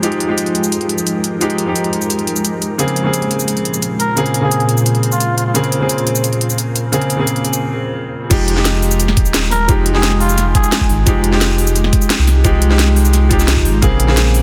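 Liquid drum and bass at 174 BPM in F minor, rolling and soulful, this excerpt opens with a clear, present grand piano carrying tape echo over an ethereal pad with chorus and pumping sidechain, while a crisp drum kit with a cracking snare, hats and shaker drives along under Fm9 and Bbm9 harmony. A veiled, raspy cup-muted trumpet adds short jazz-styled phrases with scooped notes and light vibrato at 4.0 and 9.5 seconds. After a brief break, the drop lands at 8.3 seconds with a knocking electronic kick and a deep, round sub bass given tube saturation, all within a dense, heavily limited modern master.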